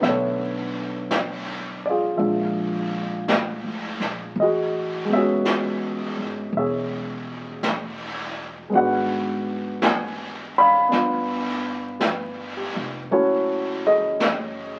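A warm grand piano, a woody pizzicato upright bass and a brushed jazz kit begin together in this smoky, melancholic slow jazz ballad, a fragment cut from a longer piece with a gentle swing feel in 4/4. The piano sits up front with short-sustain chords moving from Bm11 through Amaj13 and G7 to F#m9, while the bass sits low beneath and the brushes on snare and hi-hat sound roomy and distant. A wet club reverb and the crackle of a very old 78 rpm record lend the whole fragment a faded, nocturnal patina.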